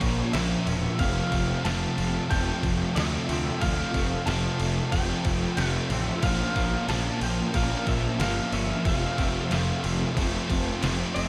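Soaked in a huge ambient reverb, this dreamy, hazy shoegaze and dream pop rock excerpt at 92 BPM in F major is driven by an up-front, detuned 8-bit drum machine with a thumpy kick, fat snare and crash, alongside a bright, overdriven fuzz bass and two background guitar riffs, one crunchy with reverse reverb and one dark and chorused. A very quiet, twangy clean guitar arpeggiates while faint vintage string-machine cellos hold mellow sustained chords over Bbm and Fmaj7, and from 0.3 seconds a lo-fi, slightly broken-up guitar through a small old amp carries a high melody with tremolo and analog delay.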